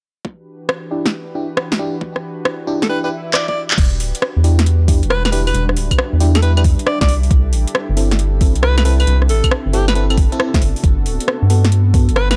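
A skippy two-step UK garage groove at 136 BPM in 4/4, swung on the sixteenths, drives this bouncy E minor excerpt. An overdriven, knocking electronic kick sits up front beside a garage kit of woody snare, metallic hats, claps, claves, rim clicks and crash, while a smooth sawtooth analog pad pumps underneath and a glassy, bell-like FM electric piano stabs through tape echo and a filter sweep. A forceful, close-miked alto saxophone takes up the melody with vibrato at 2.8 seconds. After an electronic swell and a drum fill, a rubbery square bass arrives at 3.8 seconds, and a cloudy granular pad later drifts in beneath as the chords move from Em7 to C6 to Gmaj9, all in a dry, gritty mix.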